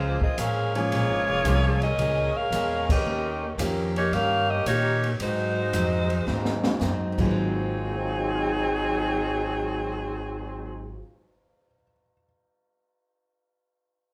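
A clear, tight saxophone section with vibrato leads this energetic, brassy big band swing excerpt up front, over woody pizzicato upright bass, a bright picked steel-string acoustic guitar and a warm grand piano in the background, while the band hits an accent at 2.8 seconds and an open jazz kit with a high-tuned snare and boomy kick plays a fill at 6.3 seconds before dropping out at 7.3 seconds, all in a live room with moderate large studio reverb.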